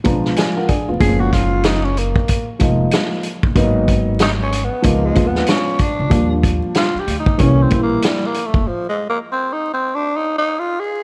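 A dark baby grand piano opens this mellow, smoky jazz-hop excerpt with a brief fill, its intimate, long-sustaining tone carrying audible action noise, while a vintage drum kit and pizzicato upright bass settle into a swung 94 BPM groove in 4/4. The drums sound punchy and up front, with a medium-tuned snare, hi-hat, a rolled-off top and a small-room character, and the bass adds a woody, thumpy gut-string bottom. From 1.0 seconds a growling tenor saxophone takes the lead, breathy and raspy with subtone, vibrato and scooped notes, sitting close and gritty over the rich jazz changes. The piano drops out around 8.3 seconds and the bass and drums follow by 8.7 seconds, leaving the saxophone alone over a short break until 11.0 seconds. Light reverb and vinyl crackle give the whole production a dusky, vintage haze.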